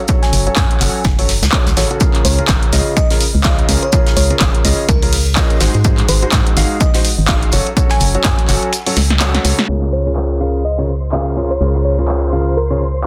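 Joyful and euphoric, this swung piano house excerpt rides on a clear, vintage grand piano riff with sidechain pumping and delay. Around it sit an up-front electronic kick, a punchy analog drum machine with snaps, claps, hi-hat and snare, a background acoustic kit adding hi-hat, shaker and snare, a hollow, organ-like FM bass that pumps, and a sparkling, bell-like FM electric piano melody with chorus and tremolo. The kick falls away at 8.4 s, and after a drum fill and band accent, a filter sweep arrives at 9.7 s as a silky analog string pad enters softly behind the groove.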